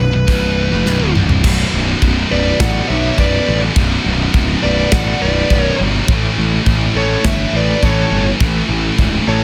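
Epic and heavy, this short fragment of a heavy metal piece opens on a dark, distorted high-gain lead guitar carrying the melody, its tone trailed by tape echo. Beneath it, a pair of bright, scooped high-gain rhythm guitars play the riff, one sitting in the background, while a growly, fuzz-soaked picked electric bass sits up front. A modern acoustic studio drum kit with a tight kick and a medium-tuned snare comes in just after the start, and a drum fill leads into a half-time feel at 1.4 seconds. At 2.3 seconds a nasal, overdriven lead guitar with a parked wah adds a second line. The harmony holds on B minor before moving to A at 6.1 seconds, and the whole mix stays dry with little reverb.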